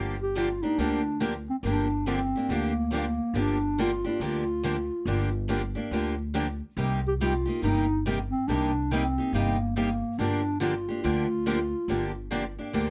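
A fiery, swinging slice of acoustic string swing in the jazz manouche style, cut from a longer piece and built on a Gm7 to Cm7 and back to Gm7 progression. A breathy clarinet carries the melody from 0.2 seconds, its dark subtone, soft attack, vibrato and scooped notes sounding close-miked and whispered, sitting intimately up front with a touch of plate reverb. Two picked steel-string acoustic guitars supply the accompaniment throughout, one warm and up front, the other bright with fresh strings and an audible finger squeak. Beneath them an upright bass plays pizzicato with a woody tone, also placed up front. The whole ensemble sits in a light reverb, keeping the feel lively and close.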